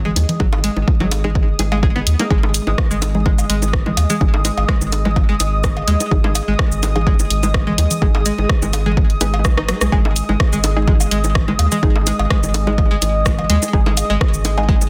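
An overdriven, punchy electronic kick sits up front in this hypnotic, clinical minimal techno piece, cut from a longer track and running at 126 BPM in 4/4 with a light swing on the 16ths. Beneath it, a round, deep analog bass built from triangle and sine tones pumps against the kick. The rest of the groove comes from a dry analog drum machine carrying hi-hat, rim click and shaker, plus a layered bed of electronic congas, bongos and cowbell dressed in reverb and delay. A twangy, string-like resonator pluck plays a bright, chorused riff with delay, while a warbly, nostalgic tape-like pad sustains with slow attack, phaser and long release. A muted, detuned dub chord stab, filtered and phased with delay, sits far back and carries a filter sweep through the opening section until a short drum fill at 9.4 seconds leads into the drop at 9.9 seconds. The mix is dense and heavily limited, with light digital ambience around it.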